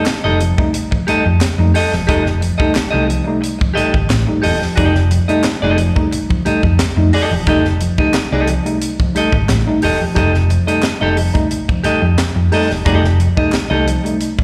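A straight 4/4 groove at 89 BPM drives this energetic funk excerpt in F mixolydian, resting on a single F9 chord throughout, where an airy fusion drum kit with a high-tuned snare and punchy kick sits up front beside a dark, round hollow-body bass that carries the most weight, a bright, twangy picked guitar with slapback echo plays accompaniment, a worn, slightly out-of-tune electric piano adds stabs through phaser and tape echo, and very quiet, crisp handclaps sit close and dry, all heard as a live gig through the venue's PA in a moderate club reverb.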